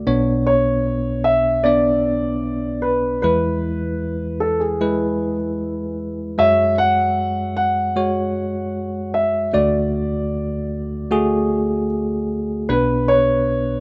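This is a rough home demo mix, wrapped in small room ambience and with a top end that stops at 10.9 kHz. The short pop fragment, cut from a longer piece, carries a longing, heartbroken mood in a straight 4/4 feel. A bell-like tine electric piano plays the accompaniment from the very start, sounding bright, clean and direct, and spans B1 to D5. At 0.5 seconds a warm concert grand piano enters with the melody between G#4 and F#5, adding deep bass weight and sitting up front in the mix. The harmony moves through Bmadd9, E, F#sus2 and D before returning to Bmadd9 at 12.7 seconds, and both pianos play through to the cut at 13.8 seconds.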